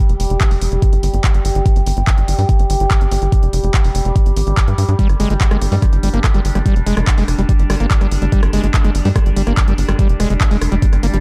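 A dark, dry production frames this driving, psychedelic trance excerpt, where a knocking, overdriven electronic kick and a tight, punchy sawtooth sequencer bass sit up front beneath tape-warm techno handclaps, hi-hats and rim clicks, a bright, chorused drone with moving overtones pumps softly behind them, a squelchy, gritty acid bass riff with resonant filter sweeps and delay enters at 5.0 seconds, and a very quiet electronic swell arrives at 11.0 seconds.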